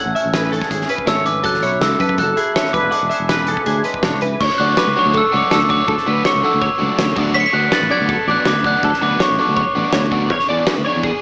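Wistful and intricate, this short math rock and midwest emo excerpt moves at 163 BPM in a straight 4/4, with a bell-like glockenspiel played with soft plastic mallets carrying the melody over chorus-and-delay twelve-string electric guitar arpeggios, a twangy, scooped electric guitar accompanying until 4.4 seconds, a growly fingered electric bass, and a loose indie drum kit with a fat snare, punchy kick and dark cymbals in a pumping room, before a dark, double-tracked overdriven guitar riff enters at 4.6 seconds as the chords shift from Amaj7, F#m7 and E7 to Dmaj7, Bm7 and E7, all heard through light reverb and a small speaker sound.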